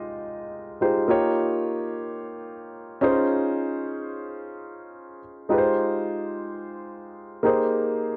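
A home-made cassette recording with moderate booth ambience gives this short fragment of a longer disco piece a slightly worn, intimate character. A single concert grand piano plays alone from 0.0 to 8.2 seconds, sitting up front with a dark, mellow tone and a deep bass. The mood is glamorous and driving, carried by a straight four-beat pulse. The harmony moves from Fm7 through Eb7 to Dbmaj7, then returns to Fm7 at 5.5 seconds as a new passage begins, closing on Abmaj7. The piano stays in a middle range throughout, and the tape colouring adds a soft, vintage haze to its sound.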